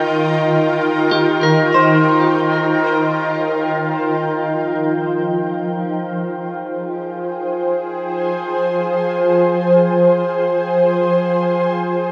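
A drenched spring reverb and heavy echo fill this spacious, reflective ambient fragment in F minor, played in free time and tuned to A4 = 444 Hz. A shimmering, detuned synth pad sits up front for the full 12.1 seconds, holding sustained chords with a warbling, vintage character, a slow attack, an octave-up shimmer and its own chorus and reverb. Alongside it, a clean electric guitar plays picked, compressed arpeggios through lush chorus and dub echo, sitting lower in the balance and heard from the start until 5.1 seconds. The harmony opens on Ebadd9 and moves to Fmadd9 at 4.4 seconds, and once the guitar drops out at 5.1 seconds the pad carries the rest of the passage on its own. The result feels suspended and airy, like a glimpse from a longer piece.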